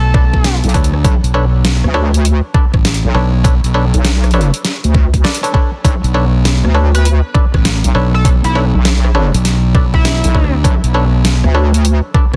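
A swung 100 BPM groove in 4/4 drives this short glitch hop cut in B minor. Its funky, swaggering feel rests on a knocking, overdriven electronic kick up front and a dubstep kit of deep snare, rim clicks and bright hi-hats. Two basses carry the low end: a growly fuzz fingered electric bass that plays throughout, and a heavy, detuned square-wave wobble bass with chorus that joins at 0.6 seconds and sits just as far forward. A muted clav adds stringy, percussive stabs, driven hard and pumping under sidechain with a digital delay trailing them. The sync lead, edgy and tearing with vibrato and a cassette-tape tint, flashes briefly at the start and returns at 6.9 seconds with its melody. The whole passage rests on a single Bm9 chord, dry and dense, with a heavily limited modern master.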